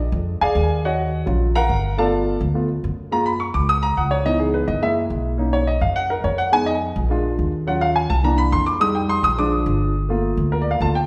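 A woody, thumpy upright bass opens this driving, sultry Afro-Cuban jazz piece, its dark plucked steel strings sitting up front. At 0.4 seconds a baby grand piano joins, natural in tone and also close, and takes the lead as a solo runs through the passage. The tempo is a brisk 211 BPM in a straight 4/4, centred on Eb minor. The harmony moves quickly through rich colours such as Ebm9, G9, Bmaj9 and Fm7b5 before a fresh pass through the section begins at 9.9 seconds with Gm7. Both instruments ring out in a reverberant recital hall, its 1.5-second decay giving this short fragment of a longer performance a spacious, church-like glow.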